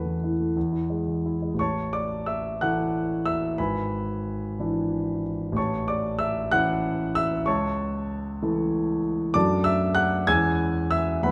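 Passionate and warm, this romantic character piece for solo piano unfolds in 6/8 at roughly 58-66 BPM in the dotted quarter, in A major, with rubato shaping the phrasing. The concert grand sits up front with a deep bass, spanning G#1 to G#6 and wrapped in the moderate reverb of a recital hall or church. A brief suspended opening on Esus4 resolves to E at 0.6 seconds and arrives on A at 1.6 seconds. The harmony then moves through E7/G#, A, A/C# and D/F# before the fragment is cut off on C#m/E at 11.3 seconds.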